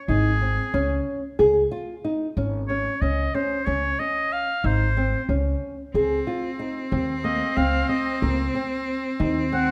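Contemporary chamber music in a restless, shimmering 7/8, where a bright oboe with light vibrato sings a classical-style melody over dark, fingerpicked nylon-string guitar arpeggios and a woody, thumpy pizzicato upright bass, all up front in a moderate recital hall reverb, and a single biting, intense bowed cello joins with a second line at 5.9 s in this passage cut from a longer piece.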